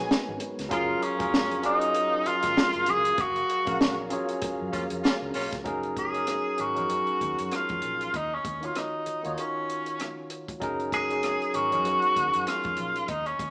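Lush 1970s-style soul with a warm, romantic mood and a swung sixteenth-note feel, cut from a longer piece. A breathy tenor saxophone carries the melody from 0.7 seconds, sitting up front yet roomy, with vibrato, subtone and scooped notes in a jazz style. Beneath it, a barky tine electric piano, lightly overdriven through a combo amp, supplies bright accompaniment, while a mellow, flute-like tonewheel organ with key click and fast rotary speaker holds very quiet sustained chords until about 5.6 seconds. A dark, round, foam-muted fingered electric bass and a dry, punchy compact cocktail drum kit with a high-tuned snare, rim click, kick and hi-hat anchor the groove, and a horn section adds brief stabs with a smooth top and light vibrato around 4.7 seconds during a band accent. Lavish chords such as G#m11, F#maj9 and D#m9 float in a wet, large studio reverb, giving the feel of a band playing live in one room heard through a small speaker.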